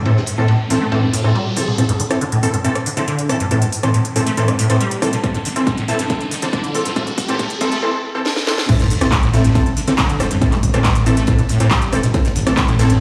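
This driving peak-time techno cut from a longer piece opens in an intense, relentless mood, with a very quiet swarming drone and an electronic riser beneath a squelchy, resonant acid saw bass riff and aggressive, thick rave stabs that sit up front with chorus, reverb and digital delay. A techno drum kit with a cracking snare, smooth hats, handclaps, rim clicks and crashes drives the build-up, its overdriven hats and cymbals pumping against the sidechain. A filter sweep moves across the acid bass through the build, and a drum fill arrives as the layered, overdriven electronic kick enters at 5.2 seconds. The drop lands at 8.7 seconds with an impact and sub drop, bringing in a deep, rumbling detuned saw bass and the return of the tense drone. At the opening and again from the drop, a gated 80s acoustic kit with bright cymbals and a fat snare rings faintly in the background of an airy stone room, and the whole mix sounds as if played on a big sound system in a bare space.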